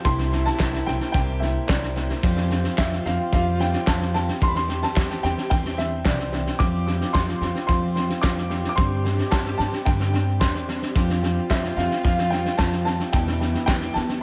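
A straight 4/4 pulse at 110 BPM comes from a loose, gritty indie drum kit up front, its fat snare and punchy kick carrying dub echo, while a distant, crisp group handclap sits very quietly from 0.6 s and a woody, growly pizzicato upright bass anchors the low end in C major. This anthemic, nostalgic indie folk excerpt has a building arrangement led by a dark, mellow upright piano melody with audible action noise and a slightly detuned edge, also washed in dub echo. Underneath, a full-bodied picked jumbo acoustic guitar with its own echo, a vibrato-laden French horn second line and a reedy, breathing pedal harmonium hold the background over chords moving from C7 through Fsus2, C/E and Gsus4 to Em, all in an echo-heavy mix with light small-room reverb.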